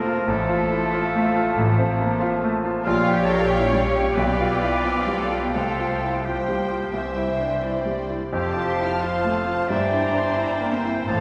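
A romantic classical movement for piano and orchestra in F major, this lyrical, lush excerpt moves in a rubato 4/4 at roughly 82 to 95 BPM. A brilliant concert grand piano carries the melody up front, ranging from deep bass notes to the middle register with a polished, present tone and short sustain, while a violin section shares the melody high above in the background. Second lines come from a bright solo oboe, a very quiet, airy flute group with crisp attacks and a hollow quality, a mellow, distant clarinet, and a second violin section whose soft-attacked, expressive vibrato reaches up to F6. Violas and a warm, roomy bassoon supply accompaniment, a dark, tight French horn section holds very quiet sustained chords, and smooth cellos join the double basses, which enter at 0.3 s, to anchor the bass. The harmony moves from F/A through Gm7b5/Bb and G7/B to a Csus4 that resolves to C, then F, before C7/G leads onward. 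The ensemble sits back in a scoring-stage space with a generous 1.7-second reverb tail, giving the strings a lush bloom behind the piano.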